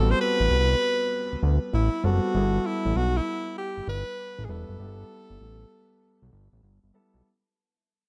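R&B in a new jack swing vein, this short clip moves at 98 BPM with a swung sixteenth-note feel, slick and confident as it fades out across its full length over an Am9 to G69 change. A breathy, close-miked tenor saxophone carries the jazz-style solo melody up front with scooped notes and a digital delay, while a fat, detuned sawtooth analog bass sits thick and saturated in the foreground with a fast attack and sustained tones. A concert grand piano with deep bass fills in the accompaniment, and the dark, warm production is wrapped in light reverb.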